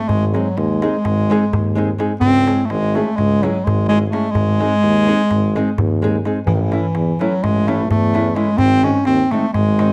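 A straight 9/8 pulse drives this short cut from a longer Balkan folk piece in the spirit of a wedding band, restless and fiery in mood. The bass clarinet carries the melody up front in a classical solo manner, its tone warm in a low-to-middle register. Beneath it, a present tuba holds down the bass line, while a small, fingerpicked nylon-string guitar fills in the harmony. A clay-shelled darbuka with natural skin, played with hard hands, sounds close and dry. The harmony moves between G# and C#m, then turns to A as a new section begins at 6.5 s before returning to G#, all set in a moderate recital-hall reverb and captured by close, detailed microphones.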